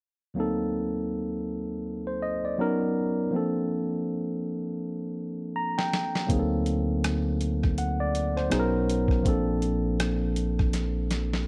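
A barky, clean tine electric piano played through a combo amp opens this relaxed neo-soul and R&B excerpt with lush extended chords in a swung 4/4, adding a fill as gritty, pitched-down boom bap drums with a thumpy kick and rim clicks arrive at 5.8 seconds and a dark, round, punchy fingered electric bass joins at 6.3 seconds, all captured in a dry, close 1970s-style studio sound.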